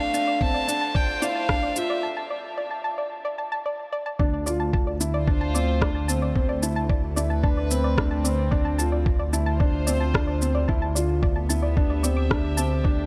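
A rich, reedy solo violin with light vibrato and a gut-string tone sits up front at the very start, singing a short delayed melody that ends at 2.0 seconds. This brief fragment of a cinematic, hypnotic piano-and-strings electronica piece moves in a straight 4/4. A felt-muted upright piano repeats a mellow, intimate riff with delay throughout, while a distant chamber string section holds floating, soft-attack chords that pump against the beat. A gentle, round pluck with chorus and delay traces arpeggios high above, and a dark, detuned saw bass rumbles on a single deep note with the same pumping motion. A tape-tinged layer of electronic shaker and rim click enters at 0.1 seconds, joined by a thumpy, muffled kick at 0.4 seconds, as a short build and break give way to the drop at 4.2 seconds, all set in light small-room reverb.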